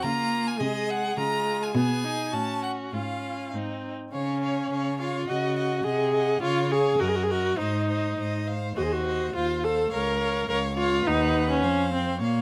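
In a quick, pliant two-beat metre with a rubato feel, this classical-period movement for string quartet carries an urgent, stormy mood. The first violin sings the melody high in its range with a clear, smooth and even bowed tone and vibrato. The second violin weaves a more expressive second line beneath it, sliding between notes with portamento and sitting somewhat distant in the blend. Up front, the viola supplies a focused, rich accompaniment, the most prominent voice in the balance, while the cello anchors the bass with a close, even, sonorous line. All four players bow together from start to finish, and after a short opening section a longer second section begins at 4.1 s, with the harmony turning darker from 8.8 s. Close, detailed microphones and a light touch of reverb keep every string voice distinct in this fragment cut from a longer piece.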